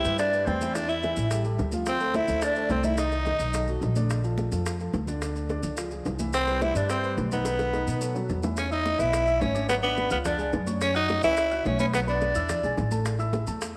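A raspy, growling tenor saxophone carries the melody up front in this sunny, sophisticated excerpt of fast Afro-Cuban jazz at 215 BPM in straight 4/4. A pure, crisp-edged silver flute sits distant in the background on a second line, entering alongside the saxophone, dropping out with it at 3.8 s and returning at 6.3 s. Underneath, a woody, thumpy pizzicato upright bass sits up front, while a dark, mellow concert grand piano with deep bass fills in the harmony through jazzy chords such as Cmaj7, B7 and Bbmaj7. High-tuned congas struck with hard hands, tight bongos played with soft hands, and grainy, vintage-sounding maracas keep a percussion bed behind the band. A drum fill leads into the second section, where the key moves from C major to E major at 8.6 s, and a wet echo-chamber reverb gives the whole ensemble a roomy glow.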